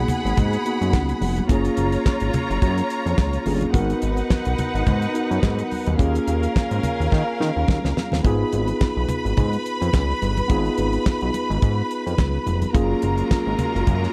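Driving, danceable disco at 107 BPM with a light 16th-note swing, built on a dry, up-front 70s drum kit with tight kick, fat snare, hi-hat and handclaps, a thick detuned sawtooth analog bass with a filter sweep, a bright clean tine electric piano accompaniment, a lush bowed string section with vibrato carrying a second line, and very quiet hard-handed congas, moving from G#m7 and F#maj9 through a drum fill at 7.1 seconds into a C#7 passage where a second, clear and close string section adds sustained background chords from 12.7 seconds, all in a dark production with light small-room reverb.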